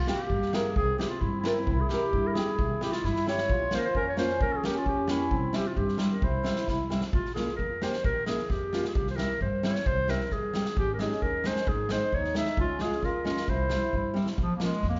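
A mellow clarinet sings the festive, bittersweet klezmer melody up front from the opening, shadowed by a reedy, dark accordion second line that drops out at 7.1 seconds and returns at 10.8. Fingerpicked nylon-string guitar with audible finger squeak, woody pizzicato upright bass on gut strings and an airy street-band drum kit with a boomy kick keep the straight two-beat pulse, and drum fills at 3.0, 6.7 and 14.2 seconds punctuate the groove. Wet recital hall reverb softens this cut from a longer piece.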